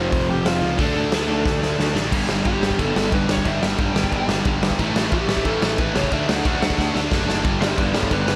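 A rowdy, upbeat punk rock cut at 180 BPM opens in half time on a lo-fi lead guitar melody through a small cranked amp, while a pair of bright overdriven rhythm guitars (one double-tracked and very quiet) and a hollow-body semi-hollow guitar pound out power-chord riffs over a growly fuzz bass, with a punchy, gritty garage drum kit up front in a stone room joining at 0.1 s, before the kit's fill at 1.5 s launches a dark, overdriven lead solo from 2.1 s that rides over the full-tempo band to the end.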